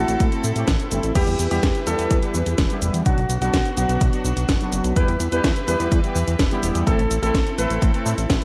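Italo disco at 126 BPM in E minor, this short excerpt from a longer piece carries a nostalgic, bittersweet mood over a straight 4/4 pulse. A concert grand piano carries the melody between F#4 and B4, its tone roughened by vintage 12-bit sampler grit and trailed by tape echo. Underneath, an intimate chamber string section holds bowed chords with vibrato and a soft attack, while a fat, detuned sawtooth bass anchors the low end. Bold, brassy synth stabs sit in the background with chorus, and a filter sweep on an analog polysynth runs through the whole passage. A dry, punchy electronic kick drives up front, overdriven like the layered house kit, whose cracking snare, hi-hat, crash and cabasa enter at 0.1 seconds, all framed by light digital ambience, a dark production and vinyl crackle over chords moving from Am through Em and Bm.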